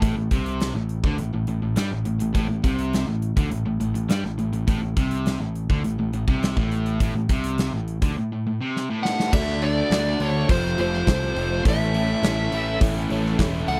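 Classic rock with a sunny, driving mood at 103 BPM in a straight 4/4, built on two picked guitar riffs, one bright and distorted and the other a sludgy overdriven layer sitting in the background, over an up-front, direct electric bass and a polished, gated 80s drum kit with bright cymbals, a medium-tuned snare and a tight kick in a stone-room ambience. During a drum fill that begins at 8.8 seconds, a dark, smooth overdriven lead guitar carries the melody up front from 9.0 seconds, while a very quiet tonewheel organ holds sustained chords through a slow rotary speaker with key click, and a detuned, jangly, woody honky-tonk upright piano adds boxy accompaniment from 9.3 seconds. The sound is dry, with the harmony moving from Amadd11 to D, F and A in this excerpt cut from a longer piece.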